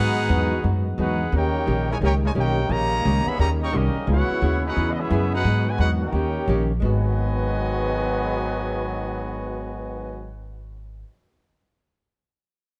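A swinging 175 BPM pulse in 4/4 drives this sultry big band jazz passage in G# minor, anchored by a woody pizzicato upright bass up front and a clean hollow-body archtop guitar accompanying in the background over G#m7, D#7 and C#m7 chords. A clear trumpet section carries the melody, a bright trombone section with vibrato plays a tight second line, and a very quiet trombone section with light vibrato holds sustained chords. The horns stop at 10.3 seconds, leaving bass and guitar to finish by 11.1 seconds in a dark production with light reverb.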